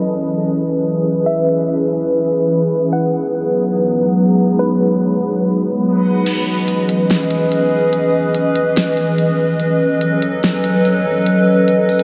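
A half-time pulse at 144 BPM in 4/4 sets this hazy, ethereal slice of atmospheric cloud-rap in C# minor, cut from a longer piece. A warbly, tape-like pad holds sustained chords throughout, its detuned, nostalgic lo-fi tone sitting dark and up front with chorus and built-in reverb, moving from C#m9 to G#m7 under a filter sweep. Alongside it, a reversed, swelling granular texture glows faintly in the background, while a hollow, bouncy square pluck with ring modulation and a noise layer traces a brief melody from 1.3 seconds, bright but distant behind chorus, low-pass filtering and delay. At 6.3 seconds a smooth, electronic R&B drum kit enters with a fat snare, smooth hi-hats and crash cymbal, its kick muted, as the chords return to C#m9 and move on to B9. The whole mix is dreamy and soaked in a huge ambient reverb, its glow softened by a low-pass filter.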